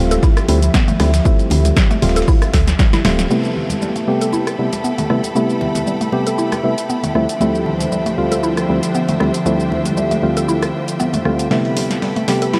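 Smooth and late-night, this deep house excerpt sways with a light swing, built on a warbling, nostalgic tape-like pad, hollow organ stabs with chorus and delay, and a mallet-like synth pluck whose arpeggios sit in a diffuse ambient delay and pass through a filter sweep from 3.3 to 11.5 seconds. A woody FM bass and a punchy electronic kick anchor only the opening seconds, while a punchy analog drum machine, very quiet congas and a gritty sampler-style kit fill out the groove, with drum fills and a band accent leading into a bright, lush string section at 3.3 seconds. Sidechain pumping breathes through the pad, stabs, pluck, bass and strings, the whole mix is soaked in dreamy reverb over chords moving between Dm11 and Am9, and a short build-up closes things out.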